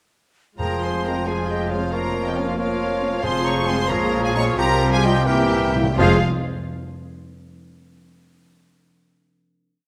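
A moderate scoring-stage reverb gives this short, complete piece for symphony orchestra a spacious concert-hall bloom. It is a dramatic, urgent romantic movement in 6/8 with a rubato feel. A lush, focused violin section carries the melody with rich vibrato, while a more distant second violin section doubles the tune an octave below and an airy, bright flute shadows it in thirds and unison. The oboe, a roomy clarinet and a vintage-toned bassoon add chords in the rhythm of the tune and sustained chords, while the violas hold tremolo chords in the background and a very quiet, mellow French horn section adds short accented and sustained chords from 1.1 seconds. Clear cellos sustain the bass, with smooth, even double basses doubling the line beneath them. Timpani played with medium mallets on calf heads strike single notes on the bass and play a fill from 5.3 to 6.0 seconds, leading into the final chord that rings out to the end.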